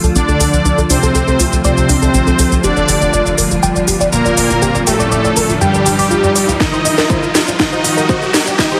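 An up-front, overdriven techno drum kit with a cracking snare and smooth hats drives this dark melodic techno build-up, cut from a longer piece. A soft supersaw carries the melody and a fat, vintage polysynth adds a bright second line, both pumping under sidechain and trailing dub echo. Around them sit a punchy, nasal sequencer bass, a tight, detuned arpeggiated synth with chorus, a morphing wavetable pad with phaser and ensemble chorus, and a shadowy analog drone, the mix set in a lush hall reverb within a dense, heavily limited master. A background riser enters at 3.3 seconds, and a heavy electronic kick arrives at 6.6 seconds for a drum fill as the chords move through Dm, Gm7 and Eb.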